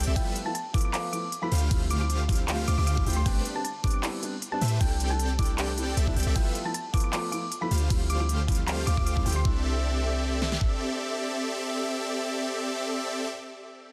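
Future bass in C major at 155 BPM, this euphoric, playful excerpt sits in a half-time feel with a light swing on the sixteenths, opening on a drop that runs through to 9.5 seconds. Huge, detuned supersaw chords carry the riff with sidechain pumping and tape echo, moving through G13, Dm11, Am11 and C6, while a deep, boomy 808-style bass sits up front until about 10.6 seconds. The pop drum kit pairs a knocking kick and fat snare with crisp hats, handclaps and crash cymbal in a small room ambience, the hats and cymbals stopping at 9.4 seconds. A round, tine-like synth pluck with a warbling, vintage character plays the melody high above, and a soft, felt-muted upright piano adds intimate accompaniment, both pumping with the sidechain and trailed by tape echo. In the background, an airy, dreamy lead with chorus and vibrato spins arpeggios, and after the drop a brief second section lets the chords, piano and lead carry on to the cut at 13.3 seconds. 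The mix is dense and heavily limited, with a digital ambience.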